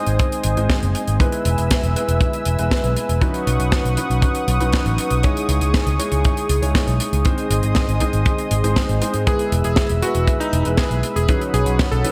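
A straight 4/4 pulse at 119 BPM drives this sunny, danceable italo disco excerpt in E major, with a tight, mid-forward acoustic kick and a dry, polished funk kit of hi-hat and medium-tuned snare running from the opening moments to the end. Up front, a picked electric bass through an envelope filter carries the low end with an amped tone, moving over a progression that cycles through G#, E, Badd9 and C#madd9. A concert grand piano adds stabs with delay, its intimate sound revealing audible action noise, deep bass and long sustain, while a smooth, detuned sawtooth analog pad holds soft-attack chords beneath, thickened by chorus. At 9.3 seconds a bright electric grand piano enters with a short delayed melody, its cutting, clangy, vintage character shaped by chorused unisons. Light, small-room reverb keeps the mix close and lively.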